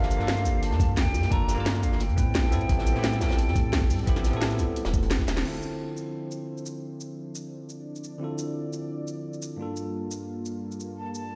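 A deep, round sine sub bass and a gritty, thumpy electronic kick anchor this soulful, melancholic liquid drum and bass cut at 174 BPM in D minor, moving through Gm7 and Am7 beneath a cracking snare and bright hats from a layered electronic kit, a dark, saturated breakbeat kit in the background, and very quiet soft-handed bongos and congas. A breathy, hollow jazz flute drifts in the distance with dub echo over a bell-like, clean electric piano and a lush, warbling, detuned unison pad that pumps with the sidechain. After a drum fill and a band accent, the bass and most of the drums drop out at 5.4 seconds, leaving the piano, pad and electronic kit to carry Dm7 and Gm7 as a filter sweep moves across the pad from 5.5 seconds, all set in a big, reverberant room.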